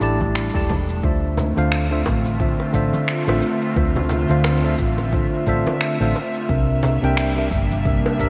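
Sunset chillout in D minor at 88 BPM with a swung sixteenth-note feel, relaxed and wistful, cut from a longer piece and set in a dreamy mix soaked in lush hall reverb. A clean, up-front tine electric piano plays accompaniment through a diffuse ambient delay over an airy, breathy pad with detuned, warbling chorus, while a dark, round hollow-body bass holds the low end. An overdriven electronic kick, gritty shaker and finger snaps, and soft-handed congas and bongos tucked into the background drive the groove as the harmony moves from A7sus4 to Dm7 at 1.0 seconds and on to C7 at 6.5 seconds.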